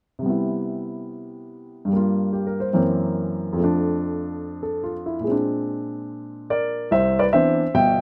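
Solo jazz with a relaxed, swinging feel, carried entirely by a baby grand piano from 0.2 to 8.0 seconds, spanning a generous range from deep bass to the upper middle register. The piano sits up front with an intimate, natural tone, its action noise clearly audible, while light reverb and a dark production lend the passage a warm glow. Rich extended harmonies such as a major seventh, a sharp-eleven dominant and a ninth chord colour the short fragment, which shifts into a new section at 6.9 seconds and resolves on a major ninth chord.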